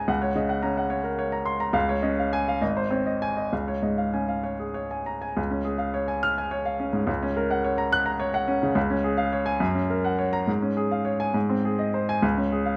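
Sparkling and heroic, this classical virtuoso piano study unfolds in D-flat major at a flexible, rubato pace of roughly 63 to 73 beats per minute, counted in dotted quarters within a lilting 6/8 metre. A clear baby grand piano plays alone for the full 12.8 seconds, ranging from the deep Ab1 up to a glittering Gb6. Its tone is polished and present, sitting up front through close, detailed microphones and a light touch of reverb. The harmony circles around the home chord, moving through G-flat over D-flat, A-flat and back to D-flat, with the opening phrase returning at 5.4 seconds. Cut from a longer piece, the passage feels like a bright, confident statement caught mid-flight.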